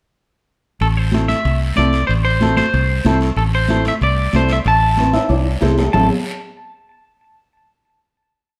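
At 0.8 seconds a bright, twangy electric guitar opens this short, fiery cumbia in A minor with up-front call phrases built from a motif, colored by spring and plate reverb. Alongside it, a foam-muted fingered bass plays a cumbia figure up front, a raspy, compressed guiro scrapes long and short strokes, and ringing metal-shell timbales with bell sound distant in the background. At 1.1 seconds a fingerpicked flamenco guitar adds triad chords with audible finger squeak, while high-tuned, thick-skinned congas played with soft hands sit back in the mix. The straight 4/4 groove moves at a brisk 188 BPM, and a nylon-string guitar fill and a drum fill lead into a final chord at 5.9 seconds. The whole passionate piece sits in a moderate large-studio reverb.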